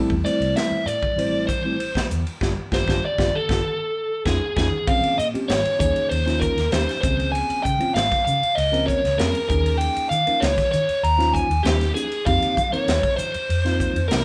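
An overdriven, up-front lead guitar carries the melody over bright tine electric piano, a dark, foam-muted fingered electric bass and a crisp fusion drum kit with a punchy kick in this slick, nocturnal electric jazz fusion cut at 97 BPM, where a band accent from 2.4 to 4.9 seconds gives way to a Bb dorian groove of Bbm9 and Eb9sus4 chords in a live room wet with studio reverb.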